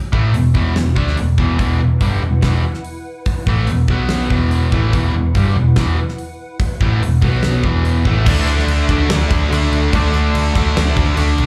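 Heard through a club PA with light reverb, this short hard rock clip from a longer piece sounds like a live gig: heavy and driving in a straight 4/4. A gated 80s drum kit sits up front with a fat snare, punchy kick and bright cymbals, crash and hi-hat ringing in an airy, gated room. Beside it, a growly, amped electric bass is picked and overdriven, prominent in the mix. Two guitars carry the riff from the start: a cranked stack guitar, bright and overdriven with slapback echo, and a crunchy, warmer overdriven guitar tucked in the background. From 1.6 seconds a hollow, soft pad adds sustained, flute-like chords with a warbling vintage ensemble chorus. At 8.3 seconds the harmony moves to D5 and a double-tracked distorted electric guitar joins the riff with its own overdrive and slapback echo, set behind the others.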